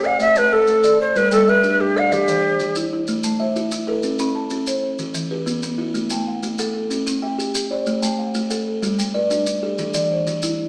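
Rippling and hypnotic, this excerpt of southern African traditional music spins an mbira-style interlocking cycle at 125 BPM in a straight 12/8, set in an equiheptatonic scale on A. A breathy cedar flute sits up front with chiff, vibrato and lifted highs, but plays only until 2.8 seconds. Beneath it, a buzzing, hollow-boxed kalimba with ringing thumbnail plucks and a dry, airy buzzing marimba on hardwood bars spin arpeggios throughout, joined at 0.2 seconds by close, grainy maracas, all set in a wet, large studio reverb.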